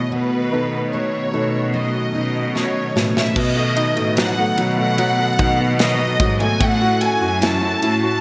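Bright 1980s-style digital production and lush hall reverb frame this hopeful, emotional pop ballad at 74 BPM, where an up-front, vibrato-rich violin section sings the melody over woody, slightly detuned upright piano, a distant bowed cello section on the bass line, an airy, breathy pad with chorus sustaining chords in the background, and a full-bodied picked steel-string acoustic guitar playing delayed arpeggios until 3.9 seconds, while a punchy studio drum kit with gated reverb enters with a fill at 2.6 seconds.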